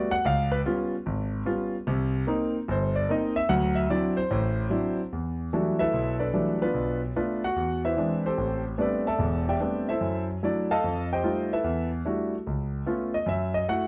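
A clear, intimate concert grand piano plays alone up front in this swinging, cool jazz fragment, its deep bass and audible action noise set in a dark production with moderate studio reverb as it moves through rich extended chords such as C#7#11, Em11 and E7b13 before cutting off at 13.9 seconds.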